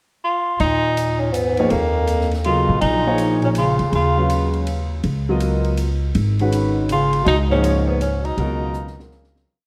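A mellow tenor saxophone leads with a subtoned, motif-based melody of scooped notes, joined almost at once by a breathy bass clarinet with light vibrato and analog delay carrying a harmony line mostly in thirds, in this searching, hypnotic modal jazz waltz at 162 BPM in Eb minor with a swung 3/4 feel. A woody, thumpy upright bass plays a two-feel part beneath an open drum kit with dark cymbals, a high-tuned snare and a ride pattern, while a concert grand with deep bass, long sustain and analog chorus soon adds syncopated quartal comping over Eb9sus4 and later Db9sus4. Both horns fall silent between 4.5 and 6.9 seconds, and the dreamy, reverb-soaked mix fades out from 7.7 seconds as the drums close with a fill.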